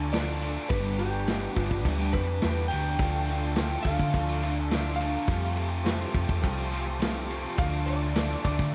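A straight, steady 4/4 groove carries this short, dusty and wistful folk rock and heartland rock fragment, cut from a longer piece, with a vintage drum kit sitting up front, its punchy kick, medium-tuned snare and crash cymbal set in a studio room with a rolled-off top. A round, dark hollow-body short-scale bass, fingered and amped, sits just as far forward, anchoring the chord movement from Dm to G, back to Dm, then Fadd9 before returning to Dm. Over this, a slightly broken-up, compressed electric slide guitar sings the melody, while a picked twelve-string acoustic guitar shimmers in the background with its octave-doubled strings. A bright, crunchy overdriven guitar plays a double-tracked riff further back, washed in spring reverb, and a very quiet musette accordion holds reedy, close-miked sustained chords. A gritty, overdriven reed electric piano, played through a combo amp, stays very quiet in the accompaniment and adds a fill from 6.4 to 7.6 seconds, all within a dark production with light reverb and a small room ambience.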